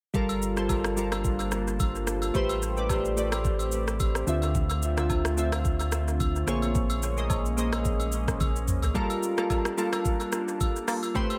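Glassy, wave-folded digital keys with chorus and dub echo open this hypnotic, late-night amapiano groove at 109 BPM in G dorian together with a round sine sub bass and an up-front electronic R&B drum kit with a knocking kick, smooth hats and dub echo. Agogo bells and woodblock enter at 0.3 s, and an ethereal FM pad with ensemble chorus and sidechain pumping hovers in the background over Gm9, Am9, Dm9 and Bbm9 chords. After a drum fill at 8.4 s, the bass drops out as a punchy, nasal, detuned sawtooth chord stab with chorus and dub echo arrives at 8.9 s in the echo-heavy mix.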